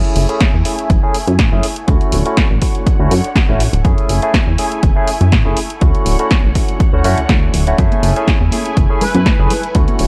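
A dry mix with little reverb opens this short cut from a longer filtered disco house track, sensual and funky at 122 BPM in F# minor, with a light 16th-note swing and a filter sweep running through the whole passage. A barky, bright tine electric piano carries the accompaniment through a phaser, alternating F#m9 and Dmaj7 chords while a rich studio string section holds smooth, lightly vibrato chords in the background. Underneath, a plucky analog bass with a fast attack and a mellow, wave-folded tone pumps against the overdriven electronic kick, which enters at 0.4 seconds and sits up front. A punchy analog drum machine supplies hi-hat and snare, re-recorded in a large room, and soft-handed tambourine and congas slip in at 7.8 seconds in the background. Near the end, at 9.0 seconds, a fat, detuned analog synth brass plays a brief B4 with chorus and a cassette-tape tint.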